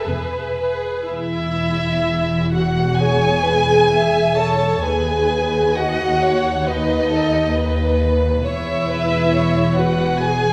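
Classical music for string orchestra, this is a slow romantic movement in E major, taken from a longer piece, moving at about 58-69 BPM in 4/4 with a rubato feel and a tender, serene mood. A dark, woody violin section carries the melody up front, while a second violin section, rich and close, sings an expressive line beneath it. A smooth, even viola section supplies the accompaniment, and the bass is shared by a distant, expressive cello section and a double bass section with soft attacks and portamento. All the strings play bowed with vibrato, the basses joining just after the upper voices at 0.1 s. The harmony rests on E, shifts to B over D# at 4.8 seconds, and returns home at 8.4 seconds, all bathed in a wet scoring-stage reverb.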